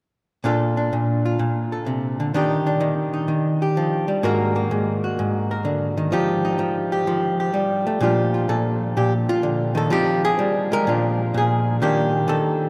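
A clean, dark hollow-body archtop guitar, miked, amplified and picked up front, plays playful, sophisticated solo jazz in Bb major at 127 BPM with a swung 4/4 feel, moving through Bbmaj7, Ebmaj7, Absus2 and F7sus2 before a new section at 8.0 seconds turns through Bb6, Fm9 and Bb7 to Ebmaj7, the whole passage cut from a longer piece and bathed in a vast, echoing cathedral reverb.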